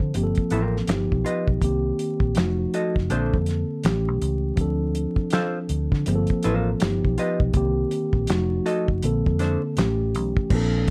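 A mellow tine electric piano sits up front, its clean tone heard through built-in speakers as it carries the accompaniment through a smooth, soulful neo-soul and R&B groove at 81 BPM in 4/4, with a 63% swing on the sixteenths. Beneath it, a vintage muted fingered electric bass plays a dark, round, foam-muted line through an amp. A cloth-damped drum kit, dry and thuddy with a tight kick, a fat snare, dark cymbals and a rolled-off top, also sits up front with hi-hat, handclaps and crash cymbal. A vintage hollow-body jazz guitar adds a clean, picked second line from 0.1 s until 9.6 s. The harmony cycles twice through Gm11, G7b13, Cm7, F7b9, Bbmaj9 and A7, with a Dm7 at 4.6 s. Light reverb and a layer of vinyl crackle color this short cut from a longer piece.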